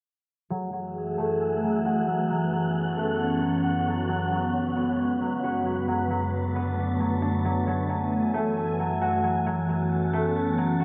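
Soaked in a lush hall reverb with a long 2.7-second tail, this hazy, melancholic hip hop excerpt drifts at 134 BPM in a half-time 4/4 feel, set in F# minor and tuned to A4 = 439 Hz. A concert harp opens at 0.5 seconds with ringing, fingerpicked arpeggios, its acoustic tone placed up front and shaded by a low-pass filter and delay. At 0.8 seconds a glassy, dark FM pad blooms in with a slow attack, holding full-bodied sustained chords colored by ensemble chorus, phaser, built-in reverb and a low-pass filter. An airy, breathy, wind-like tuned noise layer joins at 1.0 seconds, sitting softly behind the others with its own reverb and long release. A filter sweep runs through the whole passage as the harmony moves from F#m9 through A6/F#, C#7sus4/F# and Bm9/F# before returning to F#m9 and A6/F#, giving the piece an ethereal, suspended quality.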